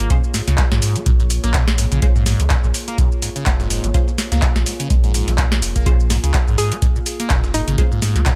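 Swung sixteenths drive this raw, driving acid house excerpt, where a deep electronic kick and a booming analog drum machine with metallic hats, tonal snare, claps and shaker sit over a very quiet, gritty breakbeat sampler kit, while a round sine sub bass and a squelchy, resonant acid bass riff with phaser and overdrive push beneath a warbling, nostalgic tape-like pad of sustained chords, muted dub chord stabs with delay, and a hollow, nasal square pluck melody that enters at 6.6 seconds with tape echo.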